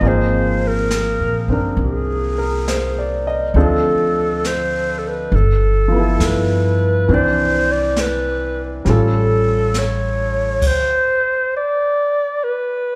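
This intimate, tender jazz ballad fragment opens with a full quartet: a growling clarinet carries the melody over a clear baby grand piano, an upright bass and a brushed drum kit, all in a relaxed swung 4/4. The clarinet sits up front with a raspy, gritty edge, scooped notes and vibrato that make its mellow solo voice feel close and personal. The piano is also near, natural and intimate enough that its action noise can be heard, while the pizzicato bass gives a woody, thumpy foundation. Further back, the brushes move across the snare, with dark cymbals and a boomy kick drum adding soft colour in a roomy, distant setting. The harmony drifts from Ab69 through Dm7, G13 and Cadd9 to an Aaug7. The bass and piano drop out at 10.6 seconds and the drums at 11.3 seconds, leaving the clarinet to sound alone in the church-like hall reverb until 13.0 seconds.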